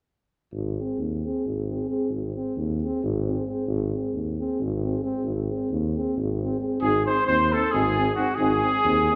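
Heard from further back in a reverberant recital hall, this fiery, restless fragment of Balkan brass folk music moves in a straight 7/8. A mellow tuba, with light vibrato, lays down the bass from 0.5 seconds and sits up front. Just after, at 0.8 seconds, a distant euphonium and a vibrato-tinged trombone add classical-style accompaniment. At 6.8 seconds a vintage-toned trumpet takes the melody up front, shadowed in the background by a clear flugelhorn playing a second line over the same range.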